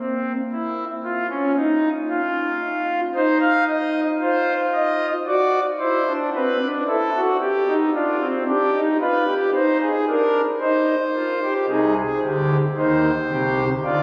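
This is a classical, baroque-style three-part fugue for pipe organ, cut from a longer piece, moving at a solemn yet driving 56 BPM in a straight 4/4. A single pipe organ plays alone for the full 14.0 seconds, sounding its foundation stops with a thick, romantic voicing that spans C2 to F5 and sits up front in the mix. The harmony opens unaccompanied by chords before settling onto Cm/Eb, then passes through D7 and G7 to arrive on Cm at 9.5 seconds. A new section begins at 11.7 seconds on Ab/C. The sound is drenched in a long cathedral reverb with a decay of 5.7 seconds, and it was recorded on a phone in the room, with club reverb and compression applied.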